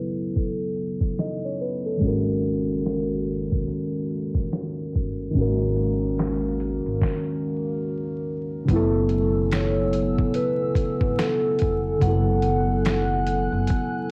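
Muted, felt-like synth keys and a mellow vibraphone played with soft mallets open this reflective, hazy lo-fi hip hop excerpt, with the vibraphone's metallic ring and slow motor vibrato falling silent after a brief phrase while the intimate, decaying keys carry on through a filter sweep. A gritty, sampler-style drum kit sits up front with a thumpy kick and a medium-tuned snare, swinging at 72 BPM in 4/4 over F# dorian harmony that moves from F#m7 to G#7sus2. A woody pizzicato upright bass joins at 2.0 seconds. After a short stop, a deep, moody analog pad with slow attack, detuned chorus and a moving notch settles onto F#m9 at 8.7 seconds. At 9.5 seconds the vibraphone returns alongside very quiet, human finger snaps. The whole excerpt sounds like a home cassette recording, soaked in vinyl crackle and muffled by low-pass filtering in a moderate booth ambience.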